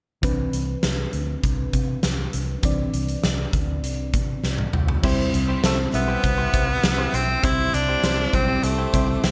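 A bright, glossy 1980s-style digital production with a lush hall reverb frames this nostalgic pop excerpt in C major at 100 BPM. A huge arena drum kit with gated reverb, a punchy kick and a fat snare drives a mellow FM electric piano with chorus and a dark, foam-muted fingered bass. A drum fill at 4.4 s leads into a fuller section at 5.0 s, where a clean, direct-recorded guitar riff and very quiet sawtooth string-machine cellos join, and from 5.6 s an edgy tenor saxophone takes the up-front solo melody with vibrato and scooped notes.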